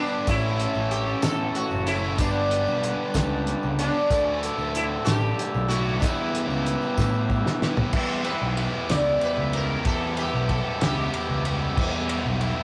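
A bright, buzzing sitar opens this dark, hypnotic psychedelic rock excerpt in a rolling 6/8, its sympathetic strings shimmering over the reedy, breathing sustained chords of a hand-pumped harmonium and a biting, double-tracked overdriven guitar riff set up front. A fuzz-soaked picked electric bass and a cloth-damped, thuddy drum kit with a fat snare, tight kick and dark cymbals join almost at once, while a jingly tambourine sits close and dry in the background. The harmony moves through A, Gadd9, Dsus2 and Em, and a drum fill carries the band into a sitar solo at 7.9 seconds. Just after, at 8.3 seconds, an ominous, rumbling low drone rises slowly beneath everything, colored by phaser and its own reverb. The sitar drops out at 11.4 seconds, leaving the rough, small-room rehearsal sound of the harmonium, guitar, bass, drums and drone to carry the piece until it is cut off.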